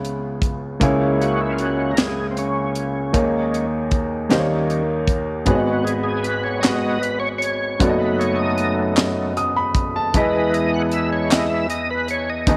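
An overdriven tonewheel organ carries the lead in this solemn, soulful slow gospel piece, entering at 0.8 seconds with thick, gritty sustained chords marked by key click, second-harmonic percussion, chorus vibrato and a slow rotary speaker. Underneath, a woody, vintage upright piano supplies accompaniment, while a crisp fusion drum kit, with an airy, polished sound, a high-tuned snare and a tight kick, keeps a straight 6/8 pulse at 51 BPM counted in dotted quarters. Organ, piano and drums all sit up front. A hollow, human group handclap joins in the background from 6.6 to 11.7 seconds. The harmony moves from C#m7 through D#7sus4 and D#7 to G#m7, B7/F# and finally Emaj7, all bathed in a moderate echo chamber reverb. This is a short cut from a longer piece.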